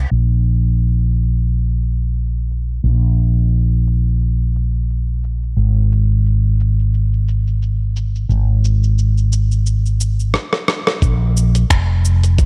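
Organic downtempo at 88 BPM with a swung sixteenth feel, earthy and hypnotic, this short cut from a longer piece rests on a mellow fretless electric bass that sits up front, round and dark, its low notes pumping under sidechain compression. A gritty, compressed soul sampler-style kit of finger snaps, hi-hat, rim click and shaker runs beneath a filter sweep until a drum fill at 10.3 seconds, after which a thumpy electronic kick enters at 11.0 seconds. Digital ambience and low-pass filtering give the production a dark, warm character.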